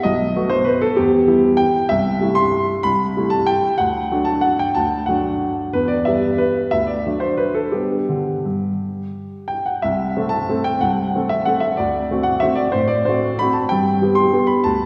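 This classical piano waltz in 3/4 feels sparkling and playful, flowing with rubato at roughly 166-203 BPM. A clear, woody, vintage-toned upright piano plays solo for the full 14.9 seconds, ranging from B1 to C6. Its smooth sound sits up front, bathed in a wet concert-hall reverb with a 2.1-second decay that suggests a listener further back in the room. The fragment moves through E minor and D harmonies toward G major, and a new section begins at 9.8 seconds.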